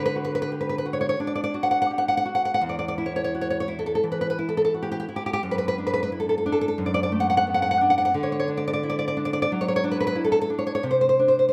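A moderate recital-hall reverb surrounds a dark, up-front nylon-string guitar, which carries a touch of slapback echo and is fingerpicked in a classical manner across a range from E2 to F#5. This romantic solo piece moves in a rubato 4/4 at around 86 BPM in D major, with a nostalgic, tender mood. The harmony passes from D through Em69 and D/F# before returning to D, and this short fragment of a longer work runs 11.5 seconds.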